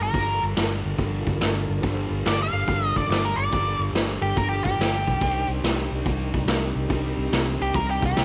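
A moderate echo-chamber reverb and small-room ambience frame this gritty, brooding blues rock and southern rock fragment, which swings in 4/4 and moves from Gm7 to Cm7 at 5.2 seconds. An up-front, dark octave-fuzz lead guitar plays a solo melody throughout, over a double-tracked fuzz guitar riff in the background and a round, punchy, foam-muted fingered electric bass. A raw, saturated garage drum kit enters at 0.1 seconds with boomy kick, medium-tuned snare and hi-hat, its rolled-off top sitting up front, while a smooth, clean tonewheel organ holds sustained chords behind everything through a slow rotary speaker with chorus vibrato and audible key click.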